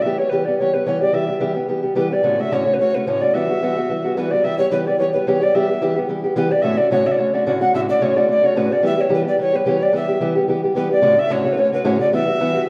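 Celtic folk with a dark yet lively, spirited mood, this short cut from a longer piece moves at a brisk pace with a light swing on the eighth notes. A mellow alto recorder carries the melody from start to finish, its airy, wooden tone marked by breathy chiff on tongued notes and an expressive vibrato, sitting up front despite a slightly distant quality. Beneath it, a fingerpicked steel-string acoustic guitar provides the accompaniment throughout, with a boxy, parlour-style sound and audible finger squeaks. The harmony circles between E minor and D major seventh chords, with an added-ninth colour on E minor. The two players sound as if performing together live in one room, wrapped in a wet stone reverb that lends the recording an echoing, chamber-like atmosphere.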